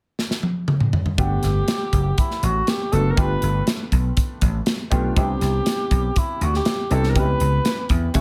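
Polished 1980s jazz-funk pop with an upbeat, glossy mood, heard in a short excerpt cut from a longer piece. A modern studio drum kit opens with a fill from 0.2 seconds, its punchy kick, medium-tuned snare, hi-hat and toms sitting up front with an airy gated reverb. At 1.2 seconds the full band arrives over a Gmaj7 chord, moving through G7 and Cmaj7 to C#m7b5. A vintage slap bass drives the low end with an amped, punchy tone placed close and forward. A clear grand piano with short sustain fills in the accompaniment through a lush chorus. Above it, a dark cor anglais carries the melody in a classical style with light vibrato, sounding distant and roomy through a digital delay, all set in a small room ambience.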